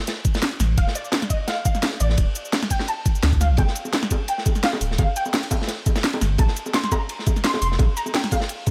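Liquid drum and bass with a melancholic, dreamy mood, heard in a short excerpt cut from a longer piece. Two drum kits drive it from the opening: an up-front, overdriven electronic kit with a cracking snare, bright hats and shaker, layered over a gritty, saturated acoustic breakbeat kit whose dark cymbals, medium-tuned snare and ride sit further back with a rolled-off top. A knocking, overdriven electronic kick anchors the groove, joined within the first second by a deep, round sine sub bass that sits prominently in the mix. A soft, gentle pluck carries the melody in a high register, its dark tone coloured by chorus, a cassette-tape character and digital delay, over chords that move from Dm to G5 to Bbsus2. Tight, high-tuned bongos played with soft hands enter at 3.6 seconds, adding a compressed acoustic texture to the small-room ambience.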